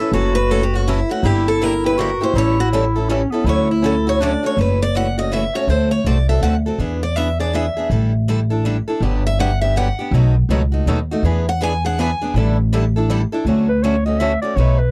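Lively and charming, this short cut of acoustic string swing in D major moves at 162 BPM in a swung 3/4, with a bright, up-front picked steel-string guitar carrying the melody from the start to 12.3 seconds, a breathy, mellow clarinet adding a second line that returns for a brief solo at 13.7 seconds, two picked acoustic guitars (one squeaky, one boxy) supplying accompaniment, and a woody, thumpy upright bass anchoring it all in a dry, close 1970s-style studio sound.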